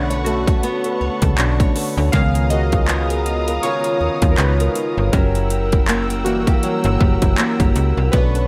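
Contemporary R&B at a moody, longing 80 BPM with a swung sixteenth-note feel, this excerpt moves through Bm9, C#13 and F#7b9 as round, detuned sawtooth analog keys carry the lead with chorus, phaser and a filter sweep. A fingerpicked nylon-string guitar adds bright arpeggios through delay, while a con sordino string section sustains veiled, distant bowed chords with sidechain pumping. A snappy FM bass with a metallic attack sits up front beside an overdriven trap kit of hard-clipped kick, handclaps and hi-hats that enters at 0.1 seconds, and a barely audible downlifter ends by 2.1 seconds inside a digital ambience.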